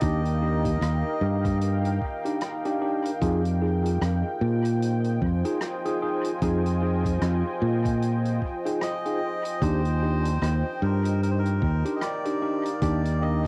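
Hazy and meditative, this ambient dub excerpt moves at 75 BPM in 4/4 with a swung 16th feel in F dorian, drifting from Ebmaj7 to Fm7 and back. A punchy, up-front fingered electric bass sits alongside a muffled, thumpy electronic kick and a distant, roomy soft-mallet kit of hi-hat and rim click with dub echo. A deep, dark, detuned sawtooth pad with chorus sustains alongside clean tine electric piano stabs through phaser, cassette tape and dub echo, while a reedy, breathy melodica with gritty sampler texture and dub echo sounds briefly at the start and returns at 8.8 seconds.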